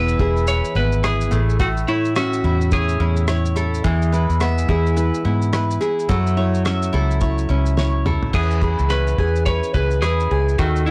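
The recording sounds blown-out and overdriven, with a light reverb around a carefree, easy-going acoustic pop groove that swings on the sixteenths, cut from a longer piece. Up front, a bright, fingerpicked classical nylon-string guitar carries the accompaniment alongside a round, punchy, foam-muted vintage electric bass that sits loudest in the mix. A woody mandolin with its doubled strings picks arpeggios underneath, while a cloth-damped, thuddy drum kit adds a fat snare with soft clipping, a tight kick, rim clicks, shaker, toms and dark crash cymbals. A clean, compressed lap steel played with fingerpicks and slide sings the melody until 3.2 seconds. It then drops out and returns at 8.3 seconds, just after a drum fill at 7.8 seconds, as the harmony moves from E and A through an F#m7 to an E6 chord.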